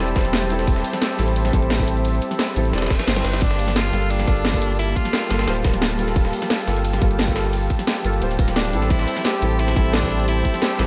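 A fleeting burst of bright tenor saxophone opens this dreamy, soulful liquid drum and bass excerpt over a soft, felt-muted upright piano with analog delay, a smooth, warbling vintage pad with chorus and sidechain pumping, and a round, up-front sine sub bass. It is soon joined by a garage kit with cracking snare and shaker and a gritty, compressed breakbeat kit tucked in the background, followed by a tight, tape-warm electronic kick, until a very quiet reverse cymbal at 2.9 s and a brief kick dropout bring back the forceful, jazz-style saxophone solo with vibrato and tape echo at 3.1 s.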